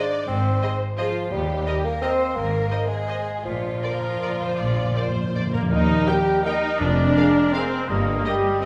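In a 3/4 with rubato at 150-186 BPM, this sweeping, festive orchestral ballroom waltz in Eb major sets distant, lush violins on the melody over a dark second violin line, an up-front viola section, a warm bassoon, very quiet French horn chords, and a bowed bass of close double basses and smooth cellos, while soft-mallet timpani add a round fill from 3.5 s, an airy flute enters at 5.5 s, and a solo oboe and a very quiet tuba join at 5.7 s, all bathed in the wet reverb of a recital hall.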